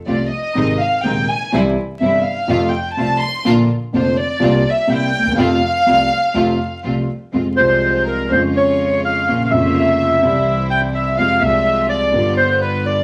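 A sultry, passionate tango opens with an intimate chamber violin section out front, bowed sul tasto with light vibrato and a soft attack, featured in the opening passage over a dark, mellow concert grand piano whose deep bass gives the accompaniment a boxy weight. Behind them, a rich studio string section adds floating, pure bowed stabs, while a woody, thumpy pizzicato upright bass on gut strings sits low in the background. The rubato feel lets the harmony move freely, and at 7.3 seconds the music darkens into a minor mode. Just after, at 7.6 seconds, a reedy bandoneon steps to the front with the melody, its boxy small-room tone set above the strings and piano. A wet studio reverb and a layer of vinyl crackle give the recording an aged, smoky atmosphere, and the excerpt ends abruptly, cut from a longer piece.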